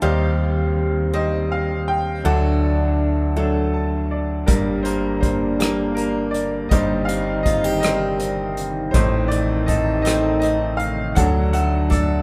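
A bright, woody upright piano carries the melody of this reflective, heartbroken acoustic folk-pop ballad in 6/8, joined from the start by a mellow French horn with light vibrato on a second line, boxy picked acoustic guitar arpeggios in a swing style, and an up-front fretless electric bass. After a piano fill, an unplugged drum kit played with bundle sticks enters at 4.5 seconds on hi-hat, tight kick and rim click, and at 5.1 seconds a dark, detuned analog pad settles in the background with slow-attack sustained chords treated with chorus and phaser. The band sounds as if playing live together in one room, with moderate studio reverb.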